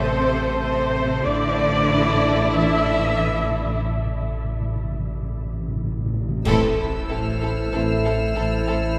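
Up-front violas carry expressive vibrato through this tense, ominous suspense film-score excerpt, joined by a clear violin melody, a lush second violin line, rich cellos, double basses with portamento, a deep, punchy sub-bass drone and a glassy, very quiet harmonics texture, while soft-mallet timpani play a fill from 1.3 s and, at 6.5 s, distant high violins return alongside mellow French horns, dark trombones and an accent from clash cymbals and concert bass drum, the whole ensemble set in a vast, echoing cathedral space.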